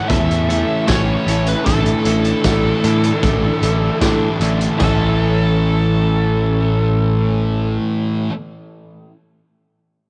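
Shoegaze and dream pop rock with a hazy, dreamy mood, this cut from a longer piece is built on a wall of picked riffs: a thick, dark fuzz guitar soaked in lush chorus and cassette tape, a double-tracked overdriven guitar sitting in the background, and a very quiet crunchy overdriven guitar, all moving over a bright, up-front picked electric bass. A biting lead guitar carries the melody above a bright, twangy twelve-string electric guitar playing arpeggios and a soft, mellow string machine cello pad holding sustained chords as the harmony shifts from A to Asus4 and back. A loose indie drum kit with gritty, saturated tone, dark cymbals and a punchy kick drops out at 5.0 s, joined briefly by a faint, jingly tambourine, and the whole piece sits in the small room ambience of a cassette home recording.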